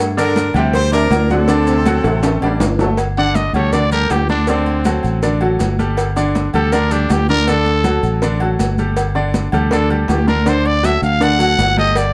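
Passionate and fiery, this salsa excerpt opens with a bright, polished grand piano and a round, up-front fingered electric bass driving the accompaniment, joined a moment later by a clear, punchy horn section carrying the melody over a bright trombone section in the background. Congas, ringing agogo bells and timbales, tight cowbell and bongos, and grainy maracas sit behind, and a drum fill at 2.0 seconds leads into a raspy, growling trumpet solo that takes over from 3.2 seconds. The production is dark, with moderate studio reverb.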